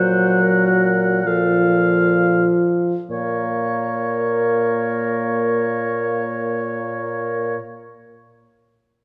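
Classical slow romantic movement for wind quintet in Bb minor, cut from a longer piece, with a yearning, solemn mood at a rubato 31-39 BPM that slows over the first 3.1 seconds as the harmony settles from F over Bb to Bb minor. A warm oboe with light vibrato carries the up-front second line while a mellow, distant French horn and a roomy clarinet heard in the background supply accompaniment. A close-miked bassoon with gentle vibrato holds the bass, all four parts sounding together until 7.6 seconds within a moderate concert hall reverb.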